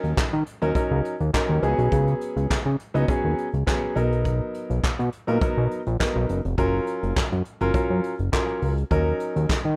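A fat, detuned analog bass with sawtooth and square-wave tones, ring modulation and a filter sweep holds down the low end of this funky, danceable early-eighties boogie funk excerpt at 103 BPM in Eb minor (tuned to A4 = 438 Hz), joined throughout by an intimate grand piano with audible action noise and plate reverb and a roomy brush drum kit with a punchy kick, hi-hat, snare and handclaps, all moving through Ebm7, Db7sus4, Bmaj7 and Gbmaj7 in a rough, lightly reverberant home demo mix.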